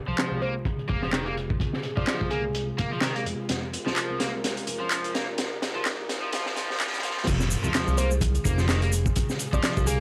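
A swung 127 BPM breakbeat groove in 4/4 drives this playful, energetic clip from a longer piece, opening on an F minor chord: a dark, gritty acoustic kit with a tight kick and high-tuned snare sits up front under layered electronic handclaps and shaker, with a filter sweep and drum fill building toward a drop at 7.3 seconds. A fat, saturated analog bass and a crunchy, double-tracked overdriven guitar riff with sampler grit and analog delay carry the low and middle range, while a warbling, nostalgic tape-like pad holds sustained chords with chorus and pumping. A bell-like, sparkling FM electric piano with a telephone tone plays the melody at the start and returns at 8.0 seconds, a very quiet riser and sub drop adds effects, and the dry hardware sound is dusted with vinyl crackle.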